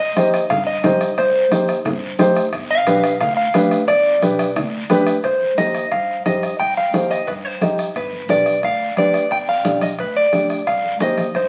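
A clean, fingered electric guitar carrying the melody up front with spring reverb opens this passionate, driving cumbia excerpt at 177 BPM in C harmonic minor alongside woody, thumpy pizzicato upright bass on gut strings. A mellow, vintage upright piano of dark tone, a soft-beater bombo, bright hard-hand congas and a raspy, close guiro join at 0.2 seconds as the guitar takes the solo through 5.2 seconds, and together they carry the Cm-to-G7 groove into the second section, all heard through a wet studio reverb and the crackle of a very old 78 rpm record.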